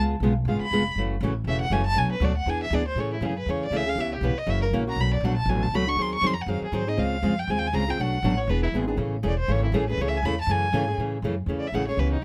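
A picked steel-string acoustic guitar and a woody pizzicato upright bass open this brisk, playful jazz manouche excerpt at 240 BPM in A major, joined at 0.5 seconds by a smooth-topped bowed violin whose expressive vibrato and portamento carry a charming solo melody over chords moving from C#7 through F#m7, Bm7 and E7 to Amaj7, all captured up front by close, detailed microphones in a dry room.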